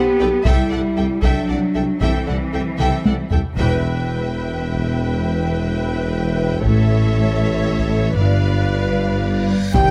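Close, detailed and lightly reverberant, this heroic, relentless cinematic orchestral cut in E minor moves at 78 BPM in 6/8, with lush vibrato violins carrying the melody and a distant second violin line over smooth violas, focused cellos, expressive double basses, a roomy tuba and punchy French horns; a heavy-sticked taiko ensemble enters at 0.5 seconds, and a huge, dark reverse cymbal from 9.4 seconds leads into an impact at 9.7 seconds that closes the cut alongside bright trombones, a mellow trumpet stab and an airy, hollow flute section.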